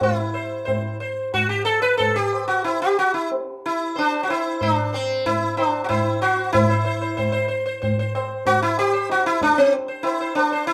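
In a straight five-beat cycle that gradually speeds up, this devotional, serene Hindustani classical passage, cut from a longer performance, pairs an up-front, plectrum-plucked sitar melody with high-tuned tabla that rings short and sits distant, as if in a large room. The acoustic sitar sounds bright and buzzing, its sympathetic strings shimmering. Played live together in a small room with a wet reverb, the music moves into a new section at 6.5 seconds.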